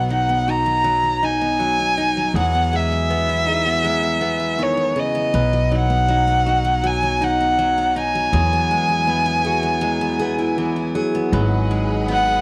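A straight 4/4 pulse at 80 BPM carries this intimate, reflective acoustic folk-pop ballad, cut from a longer piece, as an up-front bowed violin sings a smooth, vibrato-rich melody over a clean, compressed direct electric guitar, bright jumbo acoustic guitar arpeggios and a woody, growly pizzicato upright bass. The harmony moves between B and Eadd9, and then at 11.3 s it shifts to G#m7 as a lush, biting studio string section enters with close, sustained chords. A moderate echo-chamber reverb and small-room ambience give the whole a gentle sense of space.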